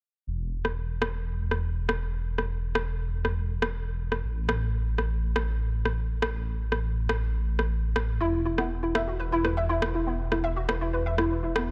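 Melodic techno at 121 BPM in a straight 4/4, this cut from a longer piece feels driving and melancholic, tuned to A4 = 443 Hz. A dark, detuned saw bass enters at 0.3 seconds, rumbling deep between E1 and A1 with a saturated, beating tone that sits up front. Shortly after, an overdriven electronic rim click joins, layered and produced, with a low-pass filter on the snare and a small room ambience around it. At 8.2 seconds a woody, wave-folded pluck arrives with arpeggios spanning B3 to E5 over an E5 chord, its mellow, organic character thickened by ensemble chorus and a dub echo and shaped by a filter sweep. A light reverb lends the whole mix a touch of space.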